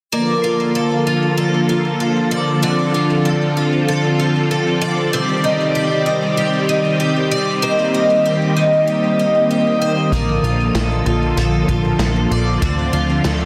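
Set at 96 BPM in a straight 4/4, this floating, ethereal dream pop excerpt in Bb major drifts through Bbmaj7, Dm7, Cmadd9 and Eb6 chords under a moderate shimmer reverb. From the start, a string machine with a viola tone holds sustained chords up front, its vintage, warbling sawtooth sound softened by a gentle attack and an ensemble chorus. Alongside it, a picked twelve-string acoustic guitar plays bright, boxy parlour arpeggios with fresh strings and an octave-doubled shimmer, colored by analog chorus and delay. At 10.1 seconds a plucky analog bass arrives up front, punchy and funky with a detuned sawtooth and pulse-wave bite, a fast attack, a decaying filter pluck and a moving notch. A vintage acoustic drum kit enters at the same moment in the background, lo-fi and muffled with a rolled-off top, a punchy kick, a medium-tuned snare and hi-hat. The dense, heavily limited modern master keeps the short fragment full and close.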